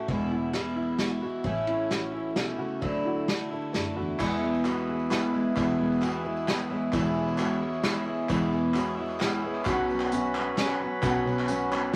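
A shimmering, octave-doubled twelve-string acoustic guitar sits up front in this uplifting, nostalgic indie folk fragment in 3/4, picking through E, A and Dadd9 alongside a fingerpicked steel-string guitar that drops out at 8.3 seconds. Beneath them a woody, boxy upright piano plays arpeggios in the background, while a single bowed double bass adds an earthy, biting line with light vibrato and an airy bow. An acoustic drum kit played with bundle sticks gives a polished small-room feel, with a punchy kick, a medium-tuned snare, hi-hat, ride and crash. At 4.2 seconds the arrangement builds as a very quiet, intimate concert grand piano with audible action noise and deep bass joins a reedy, breathing harmonium holding dark sustained chords, along with crisp, distant group handclaps and a jingly tambourine tucked in the background. The harmony moves to Bsus2 near the end, and the grand piano plays a fill at 11.7 seconds. 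Vinyl crackle and a moderate studio ambience surround the whole passage.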